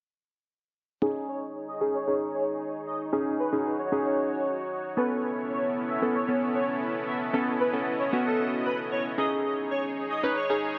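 Over a straight 4/4 pulse at 114 BPM, this bittersweet yet confident pop excerpt in C# minor layers glassy digital keys with a fast, decaying attack and chorus, a lush detuned supersaw pad holding sustained chords, and an airy, dreamy lead with vibrato, phaser and tape echo entering at 1.3 seconds, all moving from C#sus2 to Aadd9 and back under a filter sweep in an echo-heavy mix with spring reverb.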